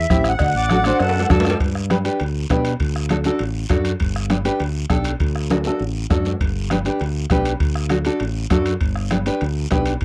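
A dry, close 1970s-style studio sound with light reverb frames this joyful, danceable cumbia excerpt in G major at 200 BPM, where a shimmering, dark musette accordion carries the melody through the opening 1.3 s, joined from 0.6 s by a full, reedy second accordion line beneath it, while a punchy, up-front fingered electric bass and a fingerpicked nylon-string guitar with fresh strings drive the piece, joined by a soft-beater bombo, damped congas in the background, a raspy guiro, and ringing cowbell and timbales from 0.4 s, with drum fills at 1.0 s and 5.5 s.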